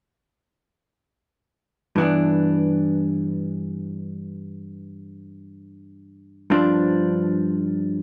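A vintage hollow-body electric jazz guitar sits up front in this brief jazz excerpt, its clean, picked tone dark and compressed. Played in free time with a romantic, late-night mood, the guitar carries the accompaniment role from 2.0 to 8.0 seconds, spanning G2 to D4. The harmony rests on a G6 chord at 2.0 seconds before moving to G7sus4 at 6.5 seconds. Light reverb and a touch of digital ambience frame the otherwise dry, close sound of a 1970s-style studio recording. The result feels intimate and unhurried, a short glimpse cut from a longer piece.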